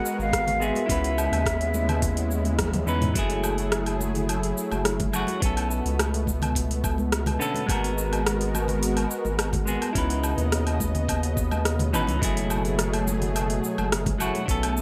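A light reverb surrounds this short sunset chillout passage in F# minor, which moves at 106 BPM in a straight 4/4 with a warm, wistful mood. An airy, hollow wooden flute carries the melody with vibrato and tape echo, but it is heard only until 2.6 s, when a drum fill and a band accent lead into the next section at 3.2 s. Beneath it, a dark, clean semi-hollow electric guitar plays fingered accompaniment through delay, while a lush, nasal unison pad with chorus sustains detuned sawtooth chords. The round analog bass sits deep and sustained with tube saturation, joined by a gritty, thumpy electronic kick drum and an up-front deep house kit whose metallic hats, cabasa, rim click, toms and woodblock are overdriven. Close, dry congas played with hard hands stay in the background as the chords cycle through G#m9, C#m9, F#m9 and B7sus2.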